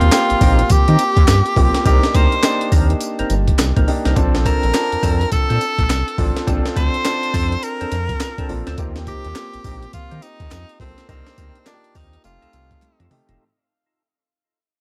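A close, dry recording that fades out across its 13.4 seconds, this upbeat, flirty new jack swing cut in Bb major rides a swung 104 BPM groove. An edgy, punchy tenor saxophone carries the jazz-style melody up front with vibrato and scooped notes. Beneath it sit a gritty, compressed, sampler-style breakbeat kit with a thumpy kick, a round, deep analog bass, an intimate concert grand piano with audible action noise, and fat, lightly overdriven tonewheel organ stabs through a slow rotary speaker, while a crisp, very quiet group handclap adds a human touch and the drums close with a fill at 12.8 seconds.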